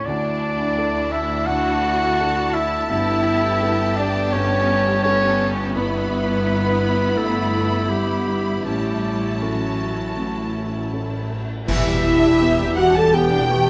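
A warm, up-front solo clarinet carries a second line through this moving, sorrowful cinematic film-score excerpt in E dorian, set at a rubato 84 BPM in 4/4, while a distant violin section sings the melody with smooth vibrato over a dark violin section, lush violas, distant cellos and an intense, bright double bass section. A felt-muted upright piano with audible action noise and a dark, roomy French horn section sit in the background as the harmony moves from Dsus2 through Gadd9 and Em/G to A6. Bright cymbals and concert bass drum arrive at 8.7 seconds, and an airy, crisp silver flute joins at 11.7 seconds on a band accent landing on Em7, all within a moderate concert hall reverb.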